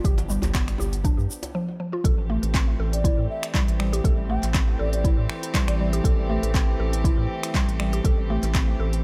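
This driving afro house excerpt in A minor opens at 120 BPM in 4/4, with a light swing on the sixteenths. A deep, tape-touched electronic kick sits up front beside a smooth-hatted deep house kit of finger snaps, handclaps and hi-hat. A round, dark analog bass, soft-attack bowed chamber strings and a woody, warbling FM mallet pluck with chorus and tape echo all breathe with sidechain pumping. A grainy, close egg shaker and a medium-tuned djembe with dub echo, set back in the background, add texture until a short break at 1.5 seconds. The drop arrives at 2.0 seconds as the harmony moves from G7 to Am7, and an airy, hollow concert flute with vibrato and tape echo enters at 2.9 seconds in the background. The mix is drenched in studio reverb, lending the distant, floating strings an echo-heavy glow.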